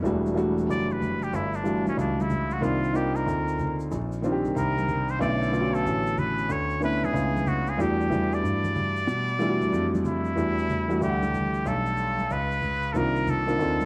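A lazy swing on the sixteenths gives this cool, mellow jazz-hop groove its loose, head-nodding lean, with a bright tube shaker and soft-handed congas sitting in the background of a small room. A woody, intimate upright piano carries the chords from the first moment, moving through minor eleventh harmonies such as Em11, Cm11 and Bm11, while a dark concert grand holds down the bass in its deep low register with short, smooth notes and audible action noise. At 0.7 s a trumpet with a straight mute enters up front, nasal and breathy, with a soft attack, light vibrato and a slapback echo, playing a jazz-style solo that runs to 10.4 s. After that point the piece moves into a new section before this cut from a longer work ends at 13.9 s. Over the whole recording lies a worn, warbling cassette patina with vinyl crackle, drifting pitch and light reverb, giving it a vintage, dusty feel.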